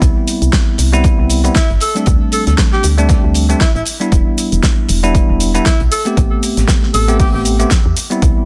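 A breathy, intimate alto saxophone solo with vibrato and scooped notes floats through tape echo from 1.6 to 7.4 seconds in this deep, moody house excerpt at 117 BPM in A minor. Beneath it sit a punchy, up-front electronic kick, a layered house kit with a fat snare, shaker and hi-hat, a very quiet, dark cocktail kit with a high-tuned snare, and a woody, round FM bass pumping under sidechain. Bell-like electric piano stabs pass through analog delay over Cmaj7, D7sus4, Em7 and Am9, set in a dense, heavily limited small-room master.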